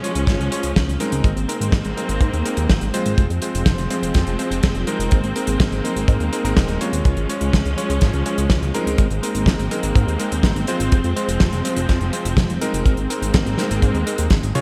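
Italo disco at 124 BPM in Ab major, romantic and playful, where a tight, up-front kick drum and a damped 70s kit with a fat snare and gated reverb play alongside a glossy chorused synth bass, while a clangy electric grand piano with gritty 12-bit sampler texture and delay stabs over lush, bowed symphonic strings holding sustained chords through Abadd9, Fm and Db, all in a bright 1980s-style digital production with light small-room ambience.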